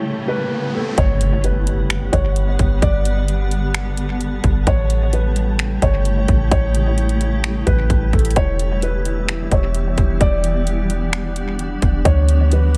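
A half-time trap groove of finger snaps, metallic hi-hats and a hard-clipped kick arrives at 1.0 seconds with a round, deep 808-style bass, as an electronic riser lands on its impact, joining the muted, boxy upright piano melody with audible action noise and analog delay, a cloudy, evolving granular pad and a breathy, wind-like noise texture far behind, all in a blissful, dreamy, echo-heavy cloud-rap excerpt.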